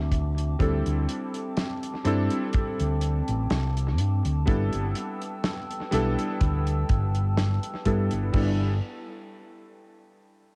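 A clangy, short-sustained electric grand piano with gritty sampler texture, chorus and delay opens this faded, dreamy vaporwave fragment, set over a warbling, detuned tape-like pad of slow-blooming chords and a dark, round fingered electric bass up front, before a tight, muffled kick and a soul kit with a fat snare, hi-hat, crash and its own delay join at 0.1 s, the harmony moving from D7sus4 to G69 in an echo-heavy, cassette-tinged small room.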